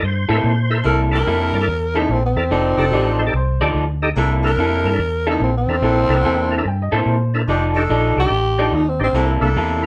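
Opening on a thick, lightly overdriven tonewheel organ with slow rotary speaker and chorus vibrato over a round, foam-muted vintage bass, this swaggering, gritty blues excerpt swings at 144 BPM in C mixolydian as a slightly broken-up, lo-fi guitar riff joins, a distant, tight saxophone section adds mellow stabs, a raspy, growling tenor saxophone takes the breathy, scooped melody from 1.2 seconds, and a woody, slightly detuned upright piano slips in a quiet second line between 2.9 and 7.5 seconds, all played live in one room with moderate reverb over C13 and F13 chords.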